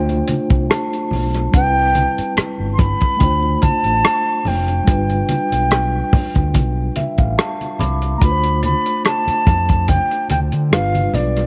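Light reverb and small-room ambience frame this bittersweet, cinematic slice of lush 1970s-style soul at 72 BPM in D dorian, where a breathy, close-miked silver concert flute carries the expressive melody up front over mellow tine electric piano (which plays a fill from 6.5 to 8.2 seconds), a punchy overdriven fingered electric bass, a dry, muffled drum kit with tight kick, hi-hat and rim click, and, in the background, saturated congas and a soft, bell-like glockenspiel played with rubber mallets.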